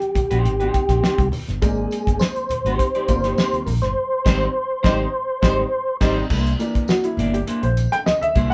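Recorded live in one room with light reverb and a muffled top end, this strutting, energetic funk excerpt opens with a break on a cloth-damped, thuddy drum kit with a fat snare, soft low-tuned congas and an up-front, mellow tonewheel organ melody through overdrive, chorus vibrato and a slow rotary speaker, joined by round picked electric bass and clean, fingered electric guitar; a worn, woody, slightly detuned upright piano and a jingly tambourine enter at 1.6 seconds, a smooth background horn section adds a second line during a band accent, and the upright piano takes a solo over C9 from 6.3 seconds.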